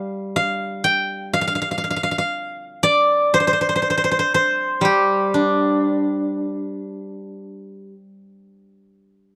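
A bright, silvery steel-string zither played with fingerpicks rings out alone and up front across this short, longing and elegant excerpt of Chinese traditional solo plucked music, moving freely in rubato across its range from G3 to G5 in a dry, close 1970s-style studio sound.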